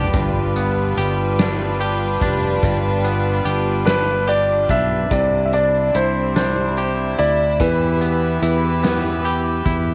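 A concert grand piano carries the melody from 3.9 s, intimate and polished with long sustain and audible action noise, over a tender, swaying six-eight pop ballad at 48 BPM in dotted quarters. Beneath it, a distant, floating string section holds soft-attack bowed chords, a bright, twangy clean electric guitar picks the accompaniment, and an up-front fretless bass adds a dark, round low end. A soft-mallet drum kit with a fat snare and boomy kick sits in a big room, the whole cut from a longer piece moving from G7 to Cadd9 at 5.1 s and Em in a moderate echo-chamber reverb.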